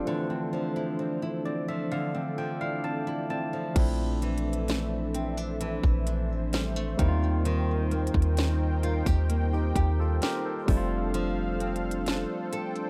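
A bright, barky tine electric piano, a smooth detuned sawtooth pad with chorus, fingerpicked nylon-string guitar arpeggios through digital delay and a deep, round 808-style bass open this tender, romantic contemporary R&B excerpt over Dm9 harmony, with the electric piano playing a fill from 1.0 seconds during the opening break before the chords move to Bbmaj9#11 and an up-front trap drum kit of hard-clipped kick, sharp snare, crisp hats and crash cymbal enters at 3.8 seconds, all set in a dark, warm digital ambience.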